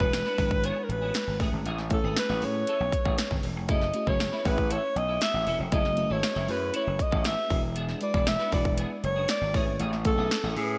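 A polished 1980s jazz-funk pop excerpt in F# minor at 118 BPM opens with everything at once: a warm, vibrato-rich alto saxophone carries the smooth lead up front over a gritty, overdriven slap bass and a punchy big-room dance kit whose gated-reverb snare and metallic hi-hats hit hard. A sparkling, bell-like FM electric piano with analog chorus fills in the harmony, while a clean semi-hollow guitar picks a riff through ensemble chorus in the background. The chords move from E7 to Amaj7 and F#m7, and the bright digital production with light reverb gives it an urban, slick sheen.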